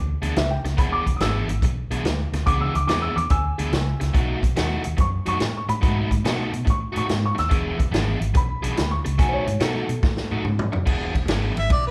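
A swung shuffle at 143 BPM in 4/4 drives this soulful, gritty electric blues cut from a longer piece, set in E mixolydian and moving between E7 and B7. A vintage drum kit sits up front with a punchy kick, a medium-tuned snare and a rolled-off top, working across hi-hat, ride, crash and toms, and it plays a fill from 10.0 to 10.9 seconds. Underneath, a foam-muted fingered electric bass gives a round, amped low end, while a biting overdriven guitar picks a riff through the middle register. A dark upright piano carries a woody, boxy second line with audible action noise and long sustain, taking a solo over the opening stretch until it stops at 10.4 seconds. At 11.6 seconds a mellow harmonica steps forward for a brief solo with scooped notes, light vibrato and a soft attack. The band plays live together in one large studio with a moderate reverb of about one second.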